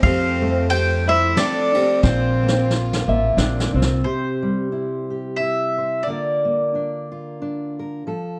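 Pastoral and peaceful, this acoustic folk excerpt moves at 90 BPM in a lightly swung 3/4, with a mellow, round mandolin carrying the melody up front over a reedy, bowed fiddle second line that drops out at 3.7 seconds. A fingerpicked steel-string guitar, a slightly broken-up, lo-fi electric guitar playing arpeggios with harmonic tremolo, a woody pizzicato upright bass and a vintage brush kit with punchy kick and rolled-off top fill out the band. The kit plays a fill from 2.0 seconds before it, the bass and the electric guitar stop at 4.0 seconds. Light reverb and a dark production frame chords moving from Fadd9 and Bbadd9 to C and Bb/D, leaving the mandolin and acoustic guitar to carry the close.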